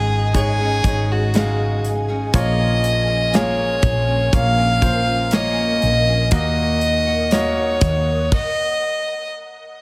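Heartbroken and deeply emotional, this short pop ballad in Bb minor moves at a slow 60 BPM in a straight 4/4, cut from a longer piece. A clear, earthy violin carries the melody up front with light vibrato, a single bowed voice that still sounds somewhat distant, while a polished baby grand piano supplies present accompaniment beneath it. A woody fretless electric bass adds a dark, round, hollow-bodied low end, and a picked steel-string acoustic guitar plays full-bodied arpeggios with delay in the background. An ethereal, airy pad holds sustained chords high above, its detuned sawtooth tone softened by a slow attack, ensemble chorus, phaser and built-in reverb. A modern studio kit with a tight kick, medium-tuned snare, hi-hat and crash enters at 0.3 s, and the harmony moves from Absus4 to Bbm to Ebm. The rest of the band stops at 8.3 s, the drums carry on until 8.6 s, and the violin rings on until 9.3 s in a small, lightly reverberant room.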